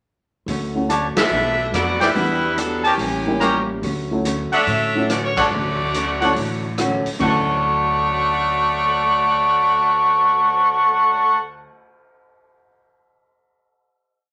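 A swung 4/4 pulse at 142 BPM drives this short, energetic big-band swing piece in D major, with the drummer keeping time on the hi-hat over a boomy kick and medium-tuned snare in a big, natural-sounding room. An upright bass plays a pizzicato two-feel line with a woody, thumpy tone, while a worn, slightly detuned upright piano with a boxy, short-sustained sound comps in syncopated rootless voicings. Tucked in the background, a clean, compressed hollow-body electric guitar strums four-to-the-bar jazz chord shapes with a dark colour. Up front, a close-miked, warm trumpet section punches syncopated stabs in drop-2 voicings, and an edgy saxophone section with light vibrato carries a tight, motif-based melody of call phrases in four-part block harmony. The whole band hits accents at 1.1 and 5.3 seconds before the opening section gives way at 7.2 seconds to a final chord, all set in a wet studio reverb.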